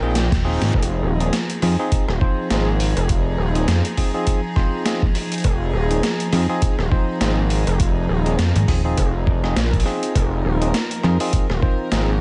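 A snappy, metallic-edged FM slap bass anchors the low end of this swaggering, funky glitch hop passage at 102 BPM in F minor with a swung 16th feel, entering at 0.3 seconds and returning at 6.3 seconds over a nasal, saturated sawtooth synth bass with a filter sweep, a thumpy, pitched-down electronic kick, a compressed boom bap sampler kit of hi-hat, rim click and high-tuned snare, pumping bell-like electric piano stabs with delay, and floating bowed string chords on Fm7, while a faint reverse cymbal sits under the opening drum fill and the dry mix carries a dusting of vinyl crackle in this cut from a longer piece.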